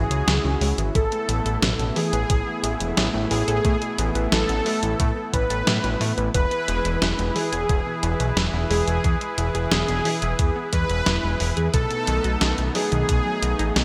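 Bright 1980s-style digital production bathed in lush hall reverb frames this nocturnal, cinematic synthwave excerpt at 89 BPM moving through C#m, Asus2, E and B7, where a smooth, detuned supersaw melody with cassette tape and digital delay floats over brassy chorused pad chords, a gentle FM bell second line, nasal phased pluck arpeggios in the background, a fat sawtooth bass up front, and a clean 12-bit drum machine with a fat gated-reverb snare joined at 1.0 seconds by a thumpy electronic kick.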